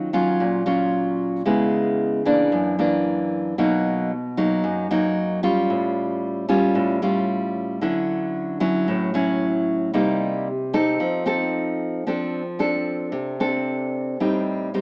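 A small-speaker sound in a stone room with moderate reverb frames this short excerpt, cut from a longer bossa nova piece at 113 BPM in 4/4 with a straight feel, sunny and sophisticated in mood. A solo nylon-string guitar, up front and fingerpicked in a classical style with fresh strings and a warm acoustic tone, ranges from Gb2 to A4 through rich chords such as Ebm9, Bmaj7 and Dmaj9. At 12.1 seconds the music moves into a new section, passing through F6 before reaching Am7b5.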